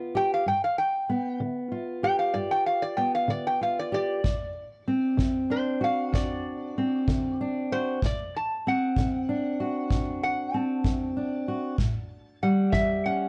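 A worn, warbling cassette-tape sound with drifting pitch colours this short fragment of a longer piece, set in a booth with moderate ambience. It is laid-back, swaggering acoustic country blues in D mixolydian, rolling at 64 beats per minute in a straight 12/8. A fingerpicked steel-string acoustic guitar plays up front as the warm accompaniment from the start, ranging from D2 to G4 over chords moving from G7 to D7 and on to A7. From 0.2 s, a metal-body resonator guitar, played with fingerpicks and a steel bar, carries the melody between C5 and A5 with a metallic, nasal bite. At 4.2 s a punchy, polished kick drum with an airy studio-room character and brushes joins close in the mix, holding until 12.9 s.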